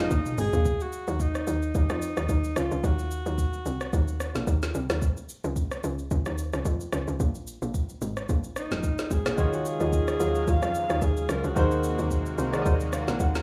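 A breathy, whispered alto saxophone carries the melody in an intimate pop style, its soft attack trailed by digital delay as it sings over the opening seconds and returns at 8.6 seconds. Beneath it, this deep, soulful amapiano cut moves at 110 BPM with a lightly swung sixteenth feel, tuned slightly flat to A4 = 437 Hz. A tight, punchy log drum bass with a fast, decaying FM attack runs throughout, up front alongside a smooth R&B drum kit with a soft kick, woody snare, smooth hats, rim click, shaker and toms, which opens with a short fill. From 9.4 seconds the arrangement fills out: a lush, detuned sawtooth pad sustains chords with chorus and sidechain pumping in the background, a hollow, dark organ stab punctuates with chorus and delay, and a grand piano with short sustain adds accompaniment before closing on a fill. The harmony drifts through colours like Fm7, Ebsus2, Ebm11 and Ab9, and the rough home demo mix keeps reverb minimal in a small room ambience.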